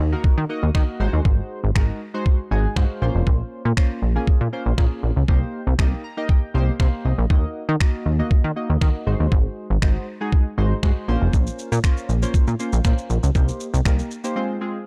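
Bittersweet yet confident, this dance-pop excerpt in Bb minor moves at 119 BPM with a straight 4/4 feel, built on a punchy, funky analog bass with a ring-modulated filter pluck and sidechain pumping, a gritty, pitched-down boom bap sampler-style kit of thumpy kick, finger snaps and shaker up front, and glossy, evolving chorused retro synth keys that pump along and add fills at 2.3 and 5.8 seconds, with a short break arriving at 14.4 seconds, all cycling through Ebm, Ab7, Bbmadd9 and Cm7 in a dark digital ambience.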